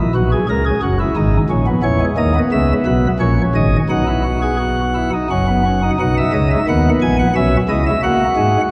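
A solo pipe organ opens a short excerpt of an elegant, lively baroque-style fugue in three voices, its light flute stops sparkling with a crisp chiff and sitting up front as the lines span from deep bass notes to high, bright treble. Moving at 88 BPM in a straight 3/4 in B major, the counterpoint passes through minor-seventh colours before settling on B, and a new section begins at 6.0 s, closing on F# at 8.0 s. A long, wet church reverb surrounds the organ in a dark, warm production, the fragment ending at 8.7 s.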